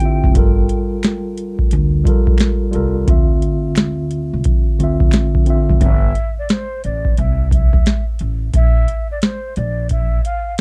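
A swung 16th-note groove at 88 BPM in 4/4 carries this melancholic, nostalgic lo-fi hip hop fragment in G dorian, where a booming, overdriven analog drum machine with a deep kick, tonal snare and metallic hats sits up front beside a woody, thumpy pizzicato upright bass, a clean tine electric piano lays down Gm9 and Dm9 chords until 5.8 seconds, soft finger snaps tick along in a small room, and a breathy, vibrato-laced concert flute with rolled-off highs, filtered and trailed by analog delay, briefly sounds at the very start and then takes the melody from 5.8 seconds in a dark, lightly reverberant mix.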